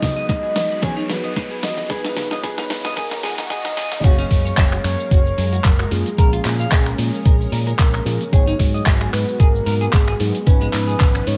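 A dusty, cassette-tinged home recording with light digital reverb carries this feel-good, groovy nu-disco cut in F# major at 112 BPM, swung on the sixteenths and cut from a longer piece. Over a gritty, compressed sampler-style kit of snare, hi-hat, claps, snaps, shaker and crash, a thumpy electronic kick and a reedy electric piano pumping in the background, a round, octave-layered synth lead with chorus, vibrato and tape echo sings the melody. A clean guitar riff glazed in lush chorus and a faint, vintage string machine holding sustained chords fill out the arrangement, while congas, maracas and an electronic riser lead a build-up with a drum fill and filter sweeps into the drop at 4.0 seconds, where a bright, punchy envelope-filtered picked bass joins.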